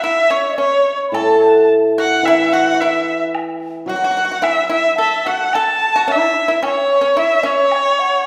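Chinese traditional chamber music with a festive, pastoral mood, this short passage cut from a longer piece moves at 110 BPM in 2/4 with a rubato feel. A single bowed erhu carries the melody up front, its rich, smooth tone shaped by vibrato and portamento. Beneath it, a dry, percussive pipa played with fingerpicks and an airy bamboo xiao, crisp in attack and set in the background, add second lines. A shimmering, ringing hammered dulcimer supplies low accompaniment from 1.1 to 5.5 seconds, while a woodblock with dark cymbals sits quietly in the background over the same stretch and beyond. The ensemble is heard from further back in a reverberant recital hall, and the music shifts into a new section at 5.5 seconds.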